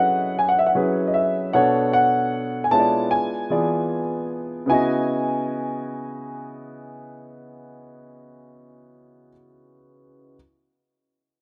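A lightly swung sixteenth-note feel in 4/4 carries this smooth, sultry R&B fragment, cut from a longer piece. A vintage-toned grand piano sings the upper melody while a natural-sounding concert grand with a deep bass supplies the accompaniment through F#m7, Bm7 and E7b9 before settling on C#m11, both up front in a rough home demo mix with light reverb and small room ambience. The melody stops at 9.3 seconds, leaving the accompanying piano to ring on alone until 10.4 seconds.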